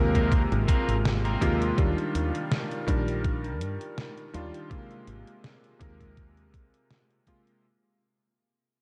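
A clear, vintage electric grand piano and a woody, dark, growly fretless electric bass open this woozy vaporwave excerpt together at 0.0 seconds. The piano sits up front with a clangy low end, thickened by analog chorus and tape echo. The bass sounds round and hollow-bodied as it anchors the harmony. A twangy, picked electric guitar riff at the edge of break-up appears only briefly, from 0.1 to 1.7 seconds, carrying subtle chorus and tape echo of its own. A thumpy, sampler-style electronic kick and a detuned 8-bit drum machine with hi-hat and a medium-tuned snare, both re-recorded in a large room, set a slow 82 BPM pulse in 4/4 with a light sixteenth-note swing. The chords move from Ab69 to Ebmaj9 and back, and the whole nostalgic passage is a fade-out, its cassette-tape mix soaked in plate reverb.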